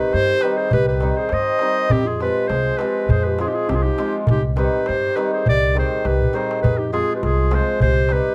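Fiery and restless, this short cut from a longer Balkan wedding-band folk piece in a straight two-beat metre has an up-front, classical-style clarinet carrying the melody with a slapback echo, while a mellow, distant, roomy second clarinet sings a lower line beneath it. A shimmering, ringing hammered dulcimer fills in the accompaniment, a woody, growly pizzicato upright bass with steel strings anchors the low end, and a clay-shell darbuka played with soft hands in a live room keeps time. The harmony moves between Cm and Fm, and a drum fill at 6.2 s leads into a new section at 6.6 s, all captured with close, detailed microphones and light reverb.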